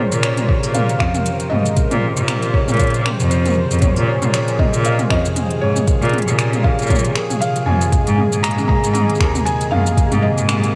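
A bowed cello sits up front, its rich, focused tone carrying the bass line with vibrato and a touch of tube saturation, though it still sounds slightly distant in this intimate, wistful folktronica piece at 117 BPM in Bb minor, a short cut from a longer work. Above it, a felt-muted upright piano plays the melody with a soft, boxy sound and audible action noise, treated with subtle chorus and a diffuse ambient delay. A thumb-plucked concert harp rings out arpeggios through the same kind of delay, while a mellow, detuned sawtooth pad with chorus holds sustained chords in the background. An organic electronic drum kit of finger snaps, smooth hi-hats, shaker and toms starts at 0.1 seconds with a lightly swung 16th-note feel, and a soft, overdriven electronic kick joins at 0.5 seconds, both in studio reverb. The harmony rests on Bbmadd9 before moving to Abadd9 at 7.9 seconds, and a huge ambient reverb soaks the whole mix in a dreamy haze.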